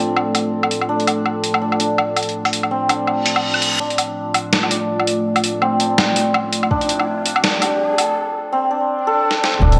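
Drenched in a wet plate reverb with a bright 1980s-style digital sheen, this heavy, spacious half-time drum and bass fragment opens on a moody, detuned analog pad holding sustained chords with chorus and sidechain pumping, under shimmering, hammered santur arpeggios that sit up front through a low-pass filter and delay. A gritty, pitched-down boom bap sampler-style kit of hi-hat, medium-tuned snare, toms and woodblock arrives with gated reverb, a thumpy electronic kick sits in the background, and a reverse cymbal from 3.2 seconds leads into a build-up of electronic riser, filter sweep on the santur and swell. A drum fill tips into an impact at 9.6 seconds, where a deep, sine-toned 808-style bass lands up front on a long low D.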